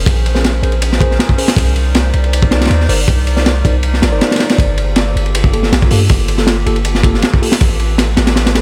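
This short excerpt of drum and bass with a jungle edge moves in a straight, driving 4/4, its crunchy breakbeat kit pushed up front with a tight kick, a high-tuned snare, and dark hi-hat and ride cymbals that sound saturated and gritty with a rolled-off top. Beneath it, a long sustained 808-style bass hums deep and sine-like, each note striking fast and then decaying, sitting just as forward in the mix. A warbly, tape-like pad holds sustained chords in the background, its nostalgic lo-fi tone coloured by chorus, built-in reverb and vintage 12-bit sampler grit. From 0.3 seconds a mellow, clean tine electric piano adds stabs through a dub echo, also tucked behind the drums. The harmony shifts through lush minor ninth chords in a small room ambience, giving the raw, frenetic energy a hazy, wistful undertow.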